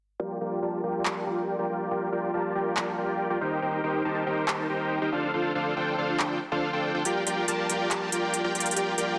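A half-time 4/4 pulse at 140 BPM drives this lush, bittersweet future bass fragment in G minor, where a huge, detuned supersaw riff with sub-octave weight and vibrato sits up front from 0.2 seconds, moving through a filter sweep and delay over Gm7, Cm7, Dm7 and back to Gm7, while an overdriven big-room dance kit of handclaps and crisp hats enters at 1.1 seconds, the whole set in a moderate, lush hall reverb and a dense, heavily limited master with a faint mains hum.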